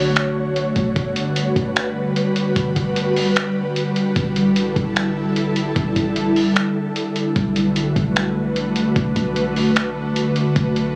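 An ethereal, airy pad sits up front in this hazy, spacious excerpt of atmospheric cloud-rap, holding sustained chords with a warbling, detuned vintage tone, ensemble chorus, built-in reverb and a sidechain pumping that makes it breathe. Underneath, a clean 808-style bass adds deep, boomy sine notes with a fast attack and a decaying tail, kept dark and in the background. A lo-fi sampler-style kit of finger snaps, hi-hat and a thumpy kick drum comes in at 0.2 seconds in a half-time feel, sounding muffled, pitched down and tape-warm, as if re-recorded in a small room. After a brief break, a glassy texture of drifting overtones enters at 7.7 seconds, calm and sustained with chorus and reverb, sitting quietly behind the other parts. The harmony moves from Bm7 through Gmaj7 and A7sus4 before returning to Bm7, and the whole track has the compressed, lightly reverberant character of a phone recording made in a room.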